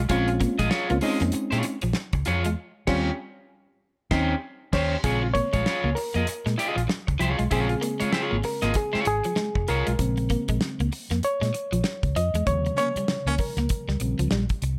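A twangy, chorused electric guitar riff at the edge of break-up and a dark, round, foam-muted fingered bass open this driving, cool funk passage at 97 BPM in Bb dorian, swung on the sixteenths. A second picked guitar adds accompaniment, a dry 70s kit brings a fat snare and tight kick, and a reedy, worn, slightly out-of-tune electric piano plays stabs that become a solo from 5.0 seconds over Bbm7 and Eb13 with band accents. The second guitar stops at 9.9 seconds, and a raspy, gritty baritone saxophone with light vibrato slips in a brief second line at 12.8 seconds, heard in a studio ambience.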